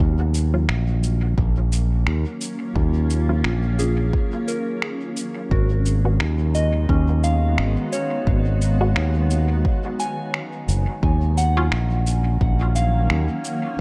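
A soft, warbling FM bell arpeggio with chorus and dub echo opens this deep, spacious ambient dub excerpt alongside a bright, punchy fingered electric bass up front and an overdriven electronic kick, then muffled, pitched-down cabasa and finger snaps, a cloudy, evolving granular pad and a muted, resonant filtered chord stab with phaser drift in behind, all moving over a swung groove from Ebm9 to Abm7 and back at 11.0 seconds.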